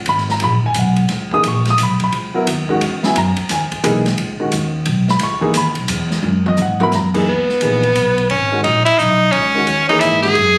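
Captured on a phone in a room with moderate studio reverb, this intense, hypnotic modal jazz piece in 3/4, cut from a longer work, sets a growly, woody pizzicato upright bass, an intimate grand piano with audible action noise and deep bass, and an airy drum kit with dark cymbals, a boomy kick and a fill at 6.2 seconds over a C#9sus4 chord, before an edgy, forceful tenor saxophone with vibrato, scooped notes and plate reverb takes the solo melody up front from 7.3 seconds.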